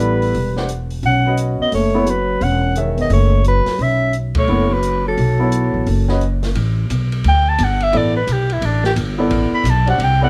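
Light reverb surrounds this searching, cool modal jazz passage, cut from a longer piece, swinging at 174 BPM over A9sus4 and B9sus4 chords. A breathy, whispered soprano saxophone carries the melody up front with light vibrato, and a distant, scooped trombone second line stops at 6.2 seconds. Underneath, a woody upright piano with long sustain accompanies, a growly pizzicato upright bass holds the bottom, and a small-room drum kit with a boomy kick and dark cymbals sits lower in the mix. The band hits an accent at 4.3 seconds, and from 6.6 seconds the saxophone takes a solo.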